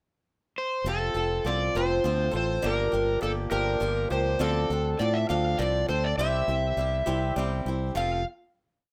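Warm and jangly, this short folk rock and heartland rock piece moves at an unhurried 68 BPM in a straight 6/8, set in F major with tuning slightly below standard pitch. An overdriven slide guitar carries the melody from 0.6 seconds, spinning motif-based phrases in period form with a fingered, up-front voice. A bright, punchy fingered electric bass enters at 0.8 seconds with a driving eighth-note line, direct and forward in the mix. A picked swing-style acoustic guitar joins at 0.9 seconds, strumming eighths in open chord shapes with a boxy tone and audible finger squeak. After a brief pickup, the verse cycles through F, Gm7, Dm7 and C before settling on a final F chord, all within moderate studio reverb and the rough feel of a home demo mix.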